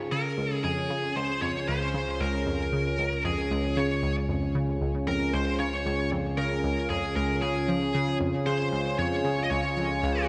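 A distorted, high-gain lead guitar sits up front in this expansive, luminous stretch of sequencer-driven space music, its picked electric melody ringing out through distortion and delay in a straight 4/4 feel. Beneath it, an analog pluck repeats a riff with a fast attack and short decay, its round, detuned sawtooth and square-wave tone touched by a noise layer, ring modulation, a filter sweep, chorus and delay. A sweeping resonant pad holds sustained chords from the very start, bright and evolving, with a soft attack, a filter swell and a long release. At 1.5 seconds an analog drone joins as the bass, a warm, resonant pulse-wave tone shaped by pulse-width modulation and chorus that rises slowly and lingers. The whole dreamy mix is soaked in a wet plate reverb, giving this excerpt, cut from a longer piece, a floating, luminous glow.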